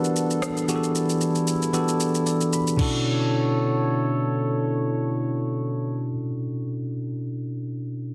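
Deep and hypnotic, this amapiano fragment puts a bright, bell-like tine electric piano up front, with a fill from 2.0 to 2.8 seconds, over dark, distant brass chords with a soft attack and sidechain pumping and a smooth electronic drum kit of crash, soft kick, rim click and shaker that stops at 2.9 seconds, as the harmony moves from Em11 to Bm11 in a lush hall reverb under a dense, heavily limited master.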